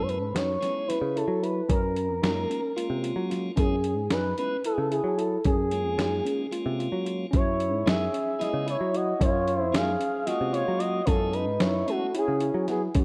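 A rough home-demo mix set in a lush hall reverb carries this intricate, driving progressive instrumental in 7/8, cut from a longer piece. Up front, a smooth sawtooth portamento lead sings the melody with vibrato, chorus and tape echo over a gritty, overdriven sampler-style drum kit with a thumpy kick and a growly picked electric bass, while a piping tonewheel organ with key click and a stopped rotary speaker plays accompaniment until 12.1 s. A worn, slightly out-of-tune tine electric piano adds echoing arpeggios in the background, and after a brief break a mellow flugelhorn enters at 7.3 s with a classical-style second line.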